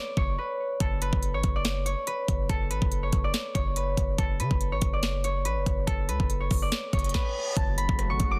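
This eerie, brooding trap cut moves in a half-time feel, opening with a mellow, ringing concert harp that carries the fingerpicked melody up front from the very first moment. A hard-hitting 808-style bass joins almost at once, punchy and heavy with a sine tone, a noise layer, a fast attack and a decaying tail. The electronic trap kit enters alongside it, with a knocking kick, sharp snare, rim clicks and crisp hi-hats, overdriven and re-recorded in a small room so the drums sit close and gritty. Near the end, a reverse cymbal rises in the background from 7.0 seconds into an electronic impact at 7.6 seconds, and a smooth, warbling vintage analog pad of detuned sawtooth chords fades in slowly at 7.7 seconds with a chorus effect. The mix is dry and dense, with a loud, heavily limited modern master, and the piece is cut from a longer work.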